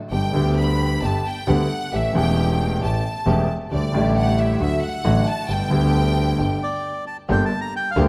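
Tango at 134 BPM in G major, dramatic and tense, with a rubato feel in a moderate concert hall. A close, earthy violin section carries a second line over an intimate concert grand piano with deep bass and audible action noise, a bowed double bass with a smooth top, and focused string stabs sitting in the background, moving from G through A7 and Dsus4 before a turn to G minor near the end. The violins drop out at 6.8 seconds, and a reedy, up-front bandoneon takes the melody from 6.6 seconds in this cut from a longer piece.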